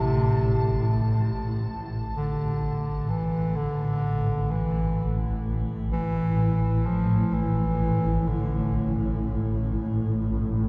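A mellow bass clarinet carries a smooth-topped melody in the low register over a swarming, nasal drone that sits up front from 0.0 to 10.7 seconds, the clarinet bathed in shimmer reverb and diffuse ambient delay. This dark ambient drone in A minor moves in free time, with a desolate, ominous mood and a huge, wet reverberant space. An icy, crystalline glass pad with chorus and shimmer glints high above only in the opening 1.7 seconds before the clarinet and detuned, granular drone continue alone, the clarinet stopping at 9.0 seconds in this fragment cut from a longer piece.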